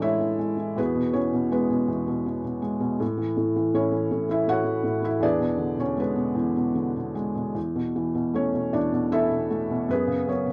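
A dark, softly reverberant sound frames this short excerpt of lyrical classical solo piano, cut from a longer piece. A felt-muted upright piano plays alone for the full 10.5 seconds, its tone mellow and intimate, placed up front. The mood is melancholic and reflective, moving at around 79 BPM in 3/4 with uneven beats and a free, rubato pulse. The harmony drifts from Amaj7 through Eadd9, A and E7 to Esus4, arriving at 9.9 seconds on F#sus2. The playing spans from E2 up to F#5, giving the muted instrument a gentle depth from low bass to a soft upper line.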